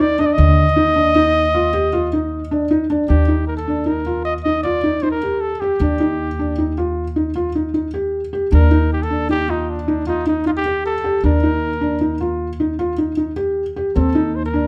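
Contemporary instrumental in a restless, hopeful Eb lydian at 155 BPM in 7/4, cut from a longer piece, where a punchy flugelhorn with light vibrato carries the up-front solo melody over boxy felt-muted upright piano arpeggios full of audible action noise and a thumpy, woody pizzicato upright bass on gut strings holding Eb, all three playing throughout in light reverb as the harmony shifts from Ebmaj7 to Eb at 3.1 seconds and to a rootless F over Eb at 14.0 seconds.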